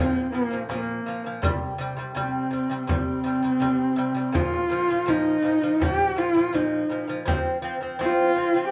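Mongolian traditional folk music, this short excerpt from a longer piece feels galloping and vast, moving at 82 BPM in a straight 4/4 in Bb zhi mode, tuned slightly low to A4 = 437 Hz. A single bowed horsehead fiddle carries the melody up front, its horsehair strings giving a husky, warm voice with expressive vibrato, gliding portamento and a smooth top. Beneath it, a fingerpicked acoustic lute with gut and double strings, some doubled at the octave, plays delicate arpeggios over the chords Bb5, C5, Bb5 and F5. A frame drum enters at 0.5 seconds and stops at 8.5 seconds, struck with hard hands in a live room. Light reverb and small room ambience give the whole a close, intimate feel, and the rough home demo mix keeps it unpolished.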